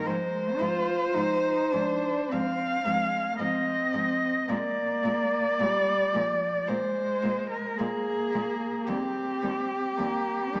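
Four bowed cellos sound together from the start of this warm, serene, lyrical classical passage, which moves in a free, rubato 4/4. Up front, a rich, expressive cello sings the melody with vibrato, soft attacks and portamento, joined by a dark, woody second line that sounds distant. Further back, an intimate sul tasto accompaniment with light vibrato and an airy bow sits above a clear, focused bass line, all wrapped in a wet concert-hall reverb with a small-speaker character, before the harmony settles on Eb at 8.9 seconds.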